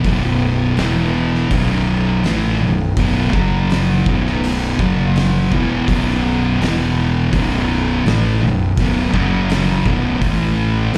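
Brooding and heavy, this 11-second excerpt of stoner and doom metal trudges at 83 BPM in a straight 4/4, its two thick fuzz guitars riffing on power chords that circle B5 with turns to E5, F#5 and a closing A5. One guitar sits up front, distorted and fuzzy, while the other lurks very quietly behind it in a darker shade. Beneath them, a round, overdriven fingered bass with tube saturation and a gritty, oversized low-tuned drum kit of punchy kick, fat snare and hi-hat fill out a live gig sound carried through the venue's PA with a touch of club reverb.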